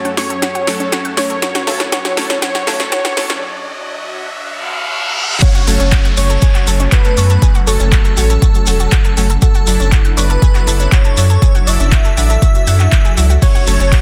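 A straight 4/4 progressive house groove at 120 BPM in F# minor carries this emotional, expansive excerpt, opening on a build-up where a thick, detuned unison lead with dub echo sings over a breathy, phased pad, a nasal analog pluck arpeggio, punchy supersaw stabs and a deep house kit of handclaps, hi-hat, ride and snare. Overdriven congas and cowbell sit in the background until 3.3 seconds, while a riser, reverse cymbal and downlifter sweep from 1.4 to 9.4 seconds across the F#m and Dadd9/F# changes. At the drop at 5.4 seconds, an up-front, tape-warm kick, a grainy shekere and a dreamy second lead with portamento join, followed at 5.7 seconds by a round, tube-saturated analog bass. The bass and the second lead pump under sidechain in a dense, heavily limited mix with light reverb.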